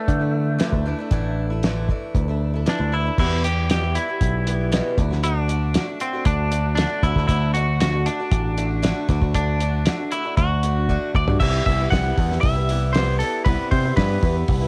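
A dry, cassette-recorded home take with little reverb frames this hopeful, nostalgic folk rock and heartland rock excerpt at 117 BPM in straight 4/4, where a twangy, compressed clean electric guitar carries the melody over a boxy, bright picked swing-style acoustic guitar with finger squeak, a punchy, direct picked electric bass up front, and a cloth-damped, thuddy drum kit with a fat snare, tight kick and dark cymbals, moving from Dsus2 through Em and D before a drum fill at 10.9 seconds leads into a closing Cmaj7 at 11.4 seconds.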